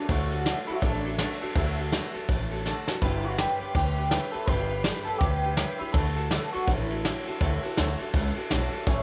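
A twangy, slightly broken-up electric guitar through a small old amp opens with the melody at once, colored by phaser and tape echo, alongside a boxy picked acoustic archtop guitar with audible finger squeak, while a woody, thumpy pizzicato upright bass and a vintage brush drum kit with dark cymbals and a punchy kick join at 0.1 seconds. This upbeat, retro rockabilly fragment swings at 164 BPM in D major, moving from D to G at 3.0 seconds and back to D at 5.9 seconds, with a short drum fill just before the change. The drums sit up front with a rolled-off top, and a small room ambience surrounds the players.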